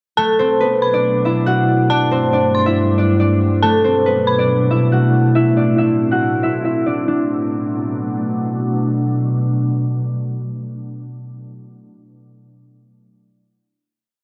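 Drill hip hop in B phrygian at 139 BPM with a menacing, cold half-time feel, where a mellow, fingerpicked concert harp loops a ringing melody doubled in octaves up front over a glassy, ethereal FM pad holding sustained chords from Bm7 through Gsus2 and Am, while an eerie, inharmonic detuned synth bell with chorus, tremolo and digital delay adds a sparse counter-melody until 4.5 seconds, all inside a huge ambient reverb and a dark, low-passed mix whose filter-swept breakdown gives way at 7.1 seconds to a final Bm7 chord.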